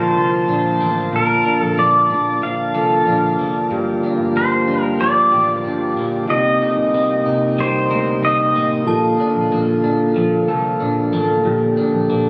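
A steady, straight 93 BPM pulse in 4/4 carries this ethereal, hazy dream pop excerpt, where an up-front pedal steel guitar sings a clean, fingerpicked melody through shimmer reverb and tape echo until 8.7 s, over a mellow, flute-like tonewheel organ with key click and slow rotary speaker, slightly broken-up electric guitar arpeggios from a small old amp with subtle chorus, a dark, foam-muted picked bass, and a brief inharmonic FM synth chime in the background at 8.9 s, all moving through Bbmaj7, Gm7 and Cm7 in a plate-reverb room captured on a phone.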